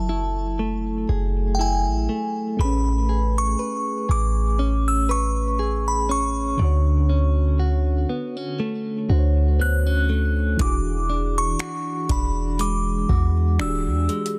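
Swung sixteenths sway gently through this smooth, tender contemporary R&B passage, where a glassy synth bell carries the high melody with chorus and digital delay over a mellow FM electric piano sitting in the background with chorus and phaser, bright direct-recorded clean guitar arpeggios colored by tremolo and delay, and a boomy, dark 808-style bass up front, until a tape-warm analog drum machine with a deep kick, metallic hi-hat and finger snaps arrives at 10.6 s, the whole held close and dense in a heavily limited modern master.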